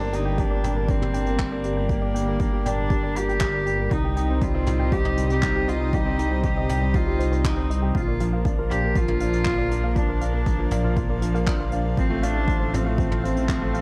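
A dark, detuned saw bass sits up front in this intimate, hypnotic piano and strings electronica piece, rumbling and beating between G1 and C2 with sidechain pumping. Above it, a distant, nasal cello carries the melody with a reedy gut-string tone and tape echo, while a concert grand piano plays a riff with audible action noise and long sustain, also through tape echo. A chamber string section holds bowed chords with light vibrato in the background, and a soft, round pluck plays arpeggios behind them, colored by chorus, sidechain pumping and tape echo. A vintage brush kit of handclaps, hi-hat and toms with a natural, rolled-off top enters at 0.1 s, joined at 0.4 s by a punchy, overdriven electronic kick. The harmony moves from Gm to Cm, Bb and finally F/A in a straight 4/4, set in light reverb and small room ambience, and the passage is cut from a longer piece.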